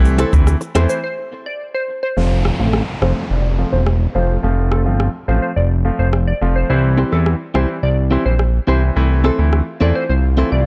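A fat, detuned sawtooth bass sits up front in this sunny, bouncy dancehall excerpt, its saturated low end carrying a filter sweep through the second part of the passage at 106 BPM in F major. An electronic afro-pop kit drives the straight 4/4 groove with a knocking kick, smooth hats, rim clicks and shaker, joined briefly at the start by a ringing acoustic egg shaker tucked in the background. Above them, a glassy, crystalline wavetable pluck carries the melody with a warbling chorus, while a clear concert grand piano supplies polished, short-sustained accompaniment beneath. A clean, direct-recorded electric guitar picks compressed arpeggios through tape echo, appearing at the outset and returning at 7.0 seconds. After a break, an electronic downlifter and swell enter at 2.2 seconds as the harmony moves from Am/C through F and C, all in a dark, dry mix.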